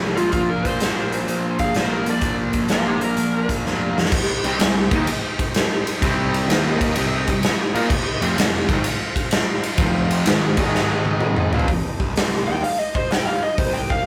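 Gritty and smoky, this short cut from a longer piece is blues rock power-trio and southern rock at 127 BPM in 4/4, with a swung eighth-note feel in C minor. A double-tracked, compressed fuzz guitar drives the riff from the first moment until 11.7 seconds, over a growly, punchy fuzz bass set in the background and a very quiet, thick overdriven tonewheel organ holding sustained chords with key click, percussion and a slow rotary speaker. A big, up-front acoustic drum kit in a bright stone room, with a punchy kick and medium-tuned snare, works through crash, ride, hi-hat and toms, adding fills near 3.6 and 10.7 seconds. In the opening seconds an overdriven slide guitar carries the melody while a dark lead guitar through a small cranked amp adds a second line. That lead returns for a short solo from 12.5 seconds as the harmony settles back on C minor. The rough rehearsal-room sound, with warm saturation and moderate reverb, keeps the whole cut raw and loose.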